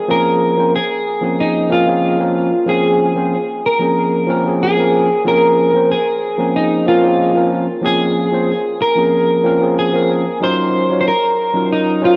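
A dark, picked electric guitar carries the melody up front, its clean tone thickened by lush chorus and tape echo, in this relaxed, wistful chillout piece at 93 BPM in B-flat minor. Beside it, a gritty, overdriven tine electric piano played through a combo amp supplies the accompaniment with analog delay, resting on Bbm9 before moving to Ebm9 at 10.4 seconds. A long plate reverb soaks the whole mix in a dreamy haze across this short cut from a longer piece.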